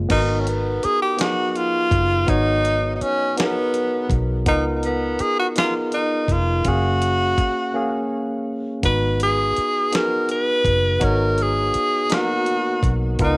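A light reverb and digital ambience give this slow, late-night R&B excerpt a sultry air, set in a straight 6/8 at 55 BPM in G# dorian with the tuning a little under standard pitch. Up front, a breathy tenor saxophone carries the solo melody in a jazz style, its tone marked by vibrato and scooped notes. A worn, slightly out-of-tune tine electric piano, clean and heard through its built-in speakers, also sits forward as it comps through G#m7, C#13 and F#maj9 before returning to G#m7 at 8.8 seconds. Beneath it, a vintage foam-muted fingered electric bass sounds dark, round and punchy through an amp, while a dusty, compressed, gritty sampler-style soul kit adds a thumpy kick, fat snare, hi-hat and crash cymbal. A brief break from 7.7 to 8.8 seconds interrupts the single section before the groove carries on until the cut.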